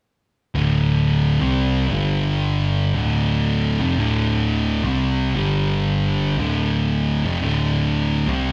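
A pair of thick fuzz guitars dominates this heavy, sludgy metal excerpt, both picking a dark, distorted riff up front from 0.5 seconds, one sitting louder than the other. Beneath them an overdriven picked electric bass adds a round, punchy low end. At a slow 70 BPM in 4/4 with a swung eighth-note feel, the band moves through D5, G5 and D minor, sounding live in one large studio room with moderate reverb.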